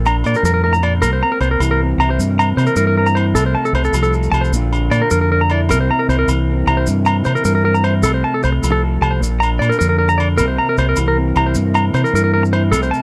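Carefree and joyful, this short cut from a longer highlife guitar band piece rolls in a straight 12/8 over a cycle of Bb, C7 and F/C chords, with a round, punchy deep dub bass up front, a dark, slightly broken-up guitar fingering the accompaniment, a bright, twangy clean guitar picking arpeggios through tape echo, ringing agogo bells and grainy, mellow maracas, all captured in a dry, close 1970s-style studio sound with light reverb.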